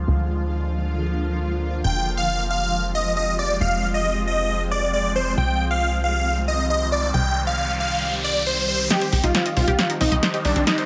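A straight 4/4 pulse drives this short uplifting trance passage, cut from a longer piece, with a driving, emotional mood. A plucky analog bass opens alone, funky and wave-folded, its sawtooth and square tones decaying with a mellow edge. At 1.8 seconds huge, lush supersaw chords enter up front, bright and detuned in unison with a moving notch, carrying the melody through a low-pass filter and delay as the harmony shifts from Dm to Fmadd9 and then Cm. An electronic riser begins at 6.5 seconds, and at 8.9 seconds a build-up arrives: a punchy analog drum machine, re-recorded in a small room, plays a fill on hi-hat and snare while a round, chorused analog pluck spins arpeggios through delay. Light reverb and digital ambience give the mix a sense of space.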